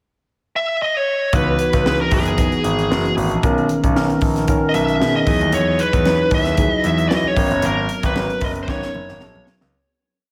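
A smooth, dark overdriven lead guitar opens at 0.6 seconds with a picked, motif-based melody through analog delay, joined at 1.3 seconds by worn, slightly out-of-tune tine electric piano chord stabs with chorus, an agile syncopated bass line on an intimate concert grand with audible action noise, and a crisp, punchy fusion drum kit, while very quiet bright congas slip in at 5.5 seconds, shaping a slick, bittersweet 1980s jazz-funk pop piece at 114 BPM in C# dorian, swung on the sixteenths and soaked in lush hall reverb before a drum fill closes its fade-out.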